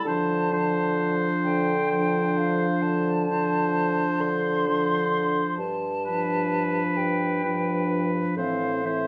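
A hollow concert flute with vibrato sings the lyrical melody above a clear, soft-attacked oboe second line in this serene, slow romantic movement for wind quintet. It moves in a rubato 12/8 at 43 BPM over Dm7, G7 and Am. A distant, mellow French horn and a warm clarinet fill the accompaniment, while a close-miked bassoon carries the bass from 0.1 seconds. The whole 9.1-second passage, cut from a longer piece, sits in a reverberant recital hall.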